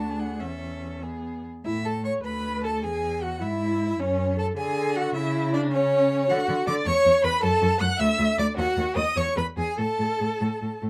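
Dark production with light reverb frames this lively, cheerful fragment of a quick classical-period string quartet movement in 6/8 with a rubato feel, where a clear, focused first violin sits close and up front singing the melody with vibrato, a distant, expressive second violin adds portamento to its supporting line, a close, soft-attacked viola fills in the accompaniment with vibrato and gliding slides, and a rich, up-front cello anchors the bass, each part bowed by a single player throughout.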